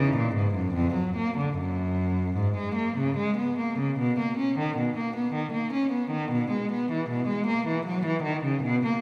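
In a triple metre with uneven, rubato beats, this baroque-style suite movement for unaccompanied cello moves with a flowing, dance-like ease. A single bowed cello carries the whole piece, ranging from E#2 up to C#4 with a rich, focused tone and vibrato. The instrument sits close and up front, even as the wet concert hall reverb, with its 2.2-second decay, gives the room a sense of being heard from further back. The solo plays from the opening moment to 9.0 seconds, its opening phrase returning at 4.0 seconds. Tuned slightly below modern pitch, at A4 = 436 Hz, this short passage is cut from a longer movement.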